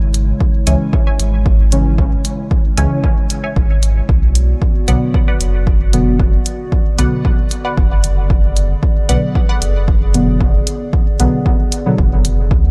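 Dub techno at 114 BPM in 4/4, this hazy, deep excerpt moves from C#m to Bm over a punchy, up-front electronic kick, a layered electronic hi-hat and a clean, smooth pure sine sub bass that pumps with the sidechain. A warbly, lo-fi tape-like pad holds slow-attack chords with chorus, built-in reverb and 12-bit sampler grit. From 0.7 s a soft, vintage mellow chord stab with a filter sweep and a muted, resonant filtered dub stab ring through phaser and dub echo, the higher stab dropping out at 9.6 s, all set in a digital ambience marked by lossy compression artefacts.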